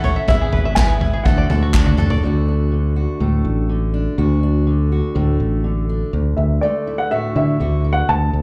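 A dark, woody upright piano carries the melody at the start of this nostalgic indie folk piece in D major at 123 BPM, returning at 6.4 seconds. Its slapback echo is shared by a bright, full-bodied picked acoustic guitar and a twangy banjo playing arpeggios with fingerpicks in the opening bars. A round, up-front fingered electric bass holds the low end throughout, while an acoustic drum kit with a punchy kick and bundle sticks plays a fill before stopping at 2.2 seconds, a crisp group handclap sounds very quietly early on, and a concert fingerpicked steel-string guitar takes over the accompaniment from there, with the performance heard as a live gig through a club PA with small room ambience and club reverb.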